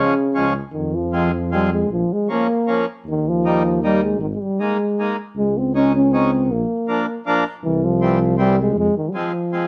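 Alpine folk in a jolly, festive dance-band vein, this brief cut from a longer piece moves at 157 BPM in a straight 3/4, in F minor with tuning slightly below standard pitch. A warm euphonium carries the melody up front with light vibrato and a classical poise, over a reedy, hollow, vintage-toned accordion supplying the accompaniment and a mellow, soft-attacked tuba holding the bass until 8.9 seconds. The trio sounds like a band playing live together in one room with light reverb, the harmony passing through chords such as Bbm, Absus2 and C before settling on Fm.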